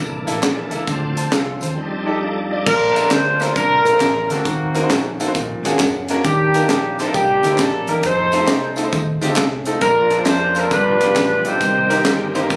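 Captured on a phone in a club room, this compressed, lightly reverberant excerpt of reverent, uplifting uptempo gospel swings along at 134 BPM in Bb major. A dark, round hollow-body electric bass, brilliant grand piano and crisp fusion kit with a high-tuned snare and tight kick drive the groove, while close, dry tambourine and group handclaps sit in the background. A shouting tonewheel organ with key click and slow rotary speaker holds sustained chords at the start, falls away, then returns at 9.8 seconds; a mellow, vintage horn section carries the melody up front with light vibrato from 2.7 seconds, and the piano adds a fill at 5.6 seconds.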